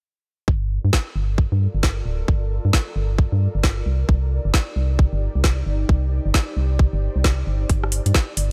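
The rhythm is a swung two-step garage groove in 4/4, with a tight, up-front electronic kick arriving at 0.5 seconds and a garage drum kit joining at 0.9 seconds with metallic hi-hats, rim clicks and a woody snare. This cut from a longer UK garage track has a soulful, late-night mood, moving between Gm7 and Cm7 before returning to Gm7 at 7.7 seconds. An organ-like FM bass carries the low end from 0.5 seconds, hollow, dark and percussive with a fast attack and decaying notes. From 1.2 seconds an ethereal, airy pad sits low in the mix holding sustained chords, its detuned unison tones softened by ensemble chorus and built-in reverb and pulsing with sidechain pumping. A filter sweep runs across the pad throughout, and the whole piece sits in a digital ambience.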